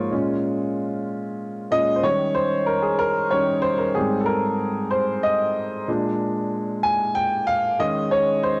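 A clear, open baby grand piano plays alone for 8.6 seconds in this hopeful, reverent gospel fragment in a straight 6/8, its long-sustaining, up-front tone moving through Bbm7, Eb7, Abmaj9 and Bb7 to rest on an unresolved Eb7sus4, all colored by cassette tape and bathed in a wet spring reverb that gives the home recording its intimate, glowing space.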